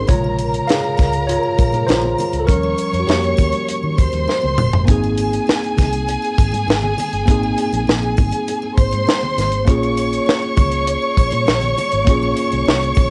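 A worn, slightly out-of-tune tine electric piano opens this lush 1970s-style soul passage with a solo, joined from the start by a bowed studio violin section and a dark, round, foam-muted fingered electric bass, while a tight funk drum kit arrives a moment later. The piano and the expressive, vibrato-rich violins both carry a cassette-tape grain and plate reverb, with the strings sitting up front as a lush second line. The dry kit, with its high-tuned snare, tight kick, hi-hat and toms, is the loudest part, and it plays a fill from 4.3 to 4.9 seconds that hands off to a fresh run through the same section. Very quiet, thick-skinned congas and a shimmering, saturated triangle add color in the background. The harmony moves from Bbm7 to Eb7 and settles on Ab before returning to Bbm7, all captured as a home cassette recording with light reverb and a lush, warm feel.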